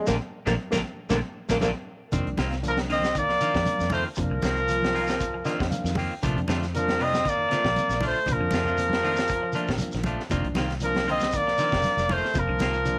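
Afrobeat, joyful and hypnotic, that opens with a brief close-miked bassoon solo over a band accent and a reed electric piano fill, then at 2.7 seconds a distant, punchy trumpet takes the melody up front with a brilliant trombone on a second line, while a saturated, gritty breakbeat kit with a high-tuned snare, bright congas, a grainy shekere, a round foam-muted fingered bass, a reedy electric piano, phaser-tinted clean guitar arpeggios and hollow-body guitar stabs keep a lightly swung groove in a small room.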